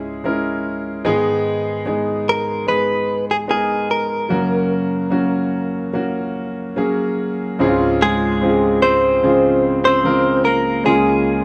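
Tender and emotional, this pop excerpt opens on a warm concert grand piano with deep, natural bass playing the accompaniment up front, joined at 2.3 s by a clean, picked electric guitar, recorded direct and compressed, that carries the melody, all in a moderate large-studio reverb as the band plays live in one room and moves into a new section at 7.6 s.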